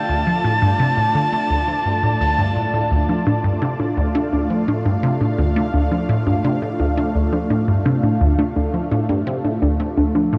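A squelchy, resonant blip pluck sits up front in this ambient, sequencer-driven space music, carrying a low riff through phaser and tape echo from the opening moment. A lush, thick unison pad holds sustained chords beneath it, fading in slowly across the whole passage with chorus and phaser adding shimmer to its bright edge. Over the top, a breathy, flute-like synth lead with soft vibrato sings a brief melody until 2.9 s, carried on chorus and tape echo. At 3.1 s a warbly, dusty pluck takes over the upper space with nasal, lo-fi arpeggios, its chorus and echo lending a worn character. A moderate, huge reverb wraps the dark, warm production in a mysterious, cosmic haze, in a straight 4/4 feel cut from a longer piece.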